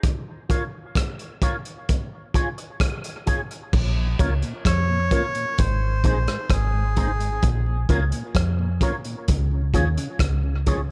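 A crunchy breakbeat drum kit sets a straight, unhurried 4/4 at 65 BPM in this heavy, hypnotic dub reggae excerpt in Bb minor, its saturated, gritty kit with dark cymbals, tight kick, rim click and hi-hat sitting up front in a dry room. From 0.5 seconds a bright, twangy electric guitar through an envelope filter joins the opening break, soaked in ensemble chorus and dub echo, over chords moving between Bb minor and Db. At 3.7 seconds a deep, round fingered bass drops in, punchy and foam-muted, as the harmony shifts through Bb minor, Ab and Db. A mellow tonewheel organ with key click and slow rotary speaker sits dark in the background, also trailing dub echo. Briefly in the middle, a reedy, nasal melodica carries the melody, its breathy tone repeated by dub echo before it drops away at 7.5 seconds.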